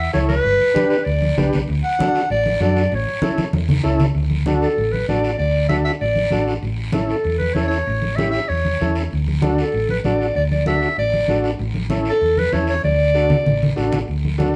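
A clear, classical-style clarinet carries the solo melody up front from the first moment, sitting between A4 and F#5 until it drops out at 13.7 seconds in this joyful, festive cumbia in D major. Underneath, a dark, round, punchy hollow-body short-scale electric bass, fingered and amped, holds the low end from G1 to F#2, while a vintage, reedy combo organ with heavy vibrato supplies clean accompaniment. Congas with a thick, damped skin and soft hands join a raspy, close guiro to drive the straight 4/4 groove at a brisk 194 BPM. The harmony moves through G, D and A, settling into alternating D and A chords once the second section begins at 4.2 seconds, with drum fills marking the turns around 3.4 seconds and again near the close. The band sounds like it is playing live in one room, wrapped in a wet studio reverb, and the passage is cut from a longer piece.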